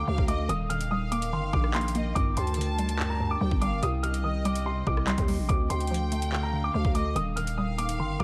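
Ominous and menacing, this short excerpt of drill-flavored hip hop moves at 144 BPM in 4/4 with a half-time feel, set in G minor over a progression of Eb, Gm, Cm, Dm and back to Eb. A piano carries the melody high in its range, its long sustain softened by a low-pass filter and tape echo, while a lush bowed violin section with vibrato sits a little distant beneath it as a second line, also touched with tape echo. Underneath, a hollow, bouncy square-wave pluck with chorus and filtering plays accompaniment in the background, and a deep, moody analog pad holds sustained chords with slow attack, chorus and phaser. A growling, buzzy 808-style bass sits up front alongside the drill kit, which enters at 0.2 seconds with a knocking kick, metallic hi-hats, handclaps and rim clicks. The whole mix is wrapped in a digital ambience that gives the dark arrangement a sense of space.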